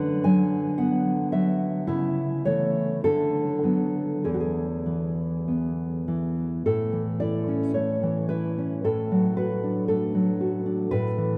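Warm and sunny, this short excerpt from a longer romantic piece for solo classical guitar moves at a slow 48-58 BPM in 2/4, with a rubato feel in A major. The nylon-string guitar sits up front with a dark, fresh-stringed tone, thumb-plucked and showing the odd finger squeak as it spans E2 to G#5, shifting from Bm/D through A/C# to E before settling on A at 6.7 s and then D/A. A wet cathedral reverb with a 6.3-second decay places the instrument in a vast, echoing space.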